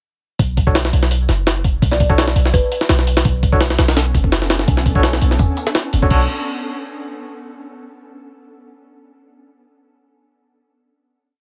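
Raw and nostalgic, this short drum and bass piece in B minor moves at 168 BPM in 4/4 with a light 16th-note swing, opening on a Bm9 chord. From 0.4 seconds a heavily chopped, pitched-up jungle breakbeat sits up front, its compressed, tape-warm sampler character carrying a thumpy kick, high-tuned snare, hi-hat and crash, while a deep, boomy 808-style sine bass with a noise layer plays a dark dub-style line. A bright, barky overdriven tine electric piano adds sparse echoing chord stabs, one shape moved in parallel, colored by fast tremolo, vintage 12-bit sampler grit and dub echo. A woody, hollow kalimba rings out briefly with short phrases in the background, and from 4.1 seconds an ethereal, airy pad of detuned, wave-folded unison voices brings mellow sustained chords through ensemble chorus and its own reverb. The drop gives way to a final chord, and the overall sound stays largely dry.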